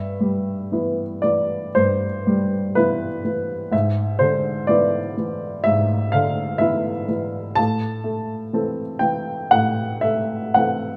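A melancholic, yearning mood hangs over this brief passage of a romantic classical nocturne for solo piano, cut from a longer piece. It unfolds in a slow, rubato 4/4, giving the phrasing a free, breathing quality. A warm upright piano carries everything alone across the full 11 seconds, its woody, slightly detuned tone sitting present and up front, with a short sustain that keeps each note close and intimate. The harmony moves from Em/G to E7/G# at 3.7 seconds and settles on Am at 7.6 seconds, deepening the sense of longing. A wet stone room reverb surrounds the instrument, lending the sound a hard-walled, echoing space.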